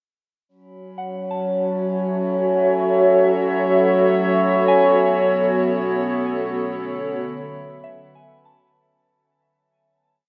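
A warbly, tape-like pad sits up front in this short, serene and melancholic ambient piece, holding slowly shifting chords with a nostalgic, lo-fi, detuned vintage character, softened by chorus, its own reverb and a shimmer reverb. Alongside it, an overtone-sweeping drone, also up front, sustains a resonant, ring-modulated tone whose harmonics keep moving, colored by chorus and reverb. In the background, a glassy, ethereal glass harmonica holds a single high note from 0.5 seconds, and a soft FM synth bell scatters pure, decaying arpeggio notes through chorus, phaser, diffuse delay and shimmer reverb; both fade in together. At a slow 57 BPM in 4/4, the music sits in F# minor, moving from F#m7 to B5 and then D6, and it begins fading out at 4.7 seconds. The whole piece is bathed in a wet cathedral reverb that places it in a vast, echoing space.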